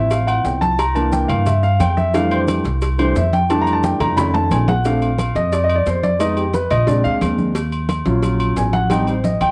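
A light reverb and small-room ambience wrap this sunny, sophisticated home cassette snippet of fast Afro-Cuban jazz at 178 BPM, where an intimate grand piano with audible action noise and long sustain solos up front over a woody pizzicato upright bass, bright soft-handed congas, tight high-tuned cowbell and bongos, ringing vintage agogo bells and timbales, and grainy maracas, moving from F major to Bb major at 4.8 s through rich chords like Bbmaj9 and Ebm9, with drum fills at 3.8 s and 8.9 s.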